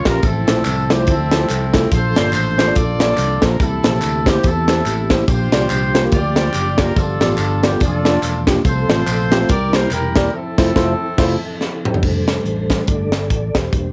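Crisp, up-front fusion drums with bright cymbals and a tight kick drive this soulful, reverent uptempo gospel fragment in swung 142 BPM and F major, where a distant jazz-style horn section carries the melody, a worn, slightly out-of-tune tine electric piano and punchy fingered electric bass fill the middle and low end, tambourine and group handclaps sit far back, and a mellow, flute-like tonewheel organ with fast rotary speaker holds chords in the background until a band accent at 10.3 s hands it a short solo from 12.0 s, all under light reverb and a homespun cassette-tape haze.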